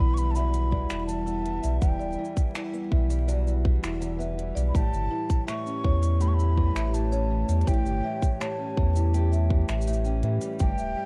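This short folktronica piece opens at once with a breathy, hollow wooden flute carrying the melody, a soft-mallet rosewood marimba playing a second line through tape echo, a fingerpicked steel-string acoustic guitar spinning boxy parlour arpeggios through analog delay, and a round sine sub bass sitting deep and up front. A warbling, detuned pad joins at 0.1 s with dark, nostalgic sustained chords coloured by chorus, phaser and its own reverb. Finger snaps, crisp hi-hat and shaker from a tape-warmed electronic kit arrive at 0.2 s, and a tight electronic kick enters up front at 0.7 s. The mood is intimate and delicate, the harmony moving from Emadd9 to A7 at 4.8 s in a straight 4/4 feel. The home cassette recording is dry, with vinyl crackle beneath the mellow flute and woody marimba.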